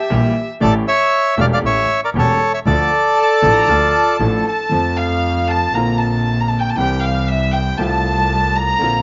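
A moderate spring reverb and small-room ambience give this dramatic, melancholic tango fragment a dark, rounded sound, with its pulse moving freely in rubato. An up-front, reedy bandoneon carries the melody from 0.6 s to 4.2 s over a bright, woody upright piano with long sustain and a distant, biting bowed double bass with vibrato, while a pure, close-miked silver flute sits in the background until 4.7 s. From there a clear, earthy chamber violin section with a smooth top steps forward for a solo passage as the harmony brightens into a major key.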